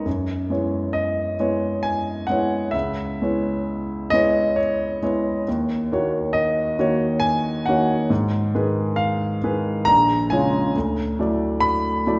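A clear grand piano carries this brief solo passage, cut from a longer impressionist classical piece, and its tone is present and intimate, with the soft clicks and thumps of the action audible and notes that hold on in a long sustain. The mood is nocturnal and hazy, with the playing moving in a flexible rubato over a triple metre. The piano spans a broad register, from A#1 in the bass up to B5, and the harmony drifts through colourful extended chords, opening on F#9sus4 and passing through C#m7, D#m7 and G#m6 before settling toward A#m7 and a closing Dadd9 at 10.8 seconds. Although the instrument sounds up front, it sits within a wet concert hall reverb with a 2.3-second decay, heard from further back in the room, so each phrase blooms into a misty halo. The instrument is tuned slightly above standard pitch, to A4 = 441 Hz, and the passage runs its full length as a single unbroken section, ending at 12.2 seconds.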